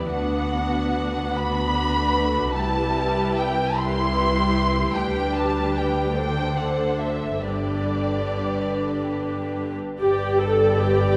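A veiled, con sordino violin section carries the melody up front in this tender, slow romantic movement for string orchestra, with a second muted violin line sitting close beneath it. In G major and 6/8 at about 46-52 BPM with rubato, the violas supply soft-attacked accompaniment while dark cello and double bass sections hold the bass, every section bowed with vibrato through the full 11.2 seconds of this excerpt. A wet scoring-stage reverb surrounds the lush strings as the harmony moves from Bm/D through Cmaj7 and G/D to settle on G.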